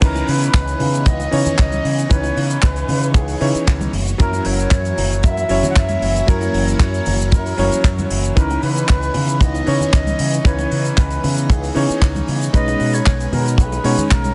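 A tight, dry kick sits up front through this sleek, groovy nu-disco drop, driving a damped 70s kit of handclaps, hi-hat, shaker and crash alongside bongos, congas and cabasa tucked in the background. A bright fingered bass with envelope filter and tube saturation pumps under a clangy electric grand piano and a lush sawtooth string machine with phaser and ensemble chorus, cycling through C#m9, F#7 and B69. Above it all, a distant, airy silver flute carries the melody with a crisp, chiffy attack, roughened by vintage 12-bit sampler grit and delay.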